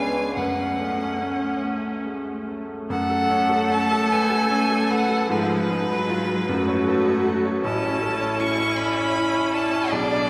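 Tender and warm, this short excerpt from a slow romantic movement for piano quartet in F# minor drifts in 6/8 at around 46-54 BPM, with a rubato feel. A clear, focused violin carries the melody up front with vibrato, while a rich, distant cello sings a second line and a viola adds expressive accompaniment with vibrato and portamento. An open grand piano with long sustain completes the accompaniment, and the whole quartet sits in a church or concert hall under a cathedral reverb of 4.8 s, moving from F#m through Fdim/Ab back to F#m before settling on A.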